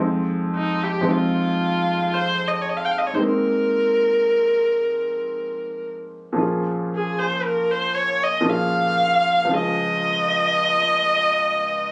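Mysterious and hazy, this brief impressionist classical passage in a rubato 3/4 places a rich, bowed solo viola with vibrato up front, entering at 0.6 seconds to carry the melody over a clear, vintage-toned grand piano that accompanies from the start through Fm7, Abadd9, Bbm7 and Dbadd9, the duo captured on a phone in a room with a light club reverb.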